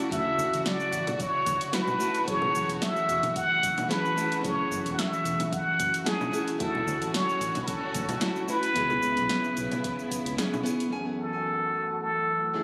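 Fingerpicked nylon-string guitar with digital delay, a lush, filtered studio string section and an overdriven deep house kit of cabasa, congas, hi-hat and punchy snare open this relaxed sunset chillout excerpt in F# minor at 111 BPM. A breathy, plunger-muted trumpet with tape echo then carries the up-front jazz-style melody over a round, dark analog bass and a deep, overdriven background electronic kick. The kit drops away at 10.9 seconds as a filter sweep moves through the strings, all heard as a phone recording in a room full of club reverb.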